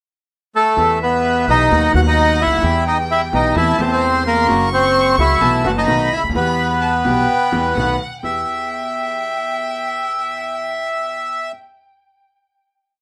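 A reedy, up-front bandoneon sings a melancholic, passionate tango melody in motif-based phrases, partly doubled in octaves, while a distant bowed violin adds a vibrato-laden counter-melody with portamento and tape echo, a bright, slightly detuned upright piano and a woody, growly pizzicato upright bass drive uneven groups of three and two eighths under the rubato feel, the bass dropping out at 8.4 seconds just after the final chord arrives, which then rings in a moderate room on a rough home demo mix.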